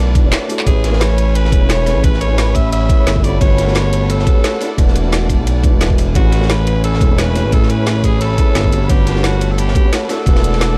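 Lightly swung sixteenths drive this dreamy liquid drum and bass clip, where an overdriven, knocking electronic kick and a layered kit of woody snare, bright hats and handclaps ride over a gritty breakbeat kit with rolled-off cymbals in the background, a smooth gliding synth bass sits up front, a mellow, boxy grand piano and a lush, distant bowed string section hold chords behind, and from 0.7 s a raspy, forceful alto saxophone carries the melody through dub echo over harmony moving among E9sus4, Amaj9 and Gmaj9#11, all within a dark production with little reverb.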